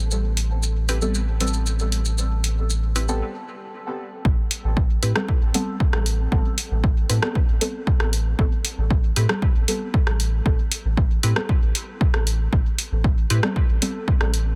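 A deep house drum kit of hi-hat, rim click and shaker sets a straight 4/4 pulse at 116 BPM from the start, with soft clipping on its snare, and a punchy, tape-warm electronic kick joins at 4.2 seconds after a brief break, both sitting up front with a small-room character. Underneath, a round, soft dub sub bass holds A minor around an Am9 chord with sidechain pumping, while a dark, wave-folded deep chord stab carries chorus, phaser and dub echo, and a crisp, detuned wavetable stab adds a bright filtered riff with its own dub echo and a filter sweep running through. This nocturnal, hazy dub techno excerpt has a digital ambience and a dense, heavily limited modern master.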